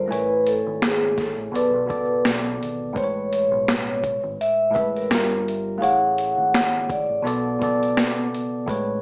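A mellow vibraphone melody with soft mallets and slow motor vibrato rings through a low-pass filter and plate reverb in this reflective, hazy lo-fi hip hop fragment, sounding from the first moment alongside a bright, bell-like tine electric piano colored by cassette tape and a dark, round, punchy dub bass underneath. A gritty, compressed, pitched-down boom bap kit of thumpy kick, high-tuned snare, hi-hat and finger snaps, re-recorded in a large room, swings under the Amaj9, Bm7, Gm7 and F#m9 changes, while the whole track carries worn, warbling tape drift and a small-speaker sound; the vibraphone stops at 8.3 seconds.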